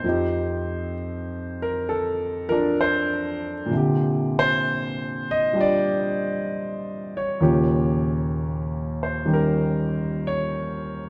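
A solo concert grand piano carries this melancholic, intimate jazz ballad, its natural tone sitting up front with a deep bass and spanning Eb2 to Eb5 at a slow 65 BPM in 4/4 with a gentle swing on the eighth notes. The harmony moves from F5 to Bb69 at 3.7 seconds and Eb9 at 7.4 seconds, all within an 11.1-second cut from a longer piece. A moderate plate reverb with a 2.4-second tail and a sense of listening from further back in the room give the playing a warm, spacious glow.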